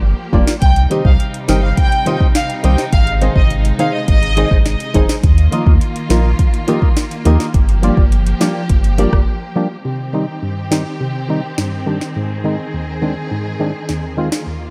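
Bouncy and tough, this dancehall cut moves at 104 BPM in a straight 4/4, set in C minor with a dark, small-room production. Up front, an electronic afro-pop drum kit hits with a deep kick, sharp snare, metallic hi-hats and rim clicks, while a round sine sub bass sits beside it with a fast attack and sustained notes. A clear, focused studio string section holds bowed chords with vibrato and a sidechain pumping effect, and a hollow, percussive organ stab with a chorus effect adds mellow, decaying accents over chords that move through Gm7, Cm, Ab and Ebsus2. A fingerpicked flamenco guitar with fresh strings weaves arpeggios, and a lush, distant violin section carries an expressive melody with tape echo from 0.6 to 4.5 seconds. The sub bass and guitar drop out at 9.2 seconds, just before a short break, leaving the drums, strings and organ to carry this excerpt into its later stretch.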